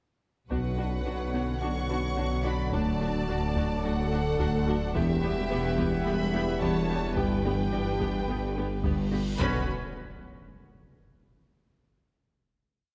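A relentless, brooding hybrid orchestral and electronic film score in a moderate concert hall, with lush vibrato violins carrying the melody over a second violin line doubling it in sixths and at the octave, while violas repeat notes, a shimmering retro pulse-width pad, mellow French horns and bright trombones hold sustained chords, a round, tine-like thumb-piano-like synth pluck pulses an arpeggiated ostinato, cellos, double basses, a dark tuba and a thick, saturated sub bass anchor the low end, close, dry taiko drums pound a big ostinato with hard sticks, and a reverse cymbal at 9.1 s leads into a huge low impact at 9.4 s beneath the final chord.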